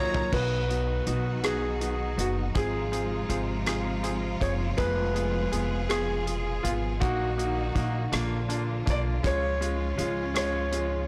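Melancholic and aching, this short slice of a six-eight pop ballad moves at a slow 54 BPM with a straight feel, tuned slightly flat of standard pitch. A bright concert grand piano carries the melody between F4 and D5, its open tone and long sustain ringing over a second grand piano that plays intimate accompaniment with audible action noise. A lush bowed string section holds sustained chords with vibrato, while a woody, thumpy pizzicato upright bass sits up front, roughened by tube saturation. A damped 70s drum kit, dry and mid-forward with a tight kick, opens with a quick fill in the first 0.3 seconds before settling in with rim clicks, hi-hat, toms and crash, its snare edged by soft clipping. The harmony drifts from B through Ab6, Fdim and Ebm/Bb to Bb and Db, and the whole recording sounds blown-out and overdriven, set in light reverb and studio ambience.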